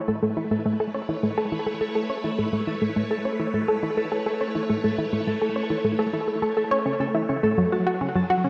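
A swirling, vintage phased string machine and a fingerpicked, ringing concert harp fade in from 0.0 s, joined at 0.1 s by a round, bright analog pluck riff up front with sub-octave weight, in this cosmic, luminous excerpt of sequencer-driven ambient space music at 104 BPM in A major, moving from A to F#m at 7.6 s and bathed in wet spring reverb with an echo-heavy, cassette-tape sound.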